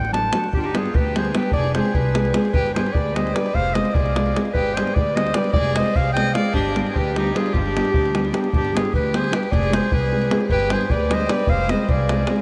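Balkan wedding-band folk in a fast, straight 5/8 at 301 BPM in G phrygian dominant, fiery and virtuosic, speeding up throughout this 12-second cut from a longer piece. A clear, classical-style clarinet leads up front with analog delay, over a woody, growly pizzicato upright bass, a tight davul, thumb-plucked classical nylon-string guitar and, from 0.6 seconds, a single bowed violin carrying a smooth, warm second line with vibrato. The chords circle between G and F minor, and a huge ambient reverb soaks the mix in a dreamy wash.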